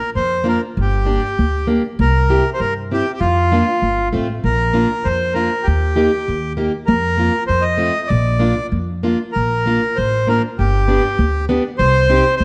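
Festive and jolly, this alpine folk dance-band piece in Bb major moves at 98 BPM in a loose, rubato 2/4, with a reedy, up-front accordion carrying the melody from the start, a woody, thumpy pizzicato upright bass on gut strings entering at 0.2 seconds, and a picked, plugged-in steel-string parlour guitar with fresh strings adding accompaniment from 0.4 seconds, all set in a moderate recital-hall reverb and tuned slightly low to A4 = 439 Hz.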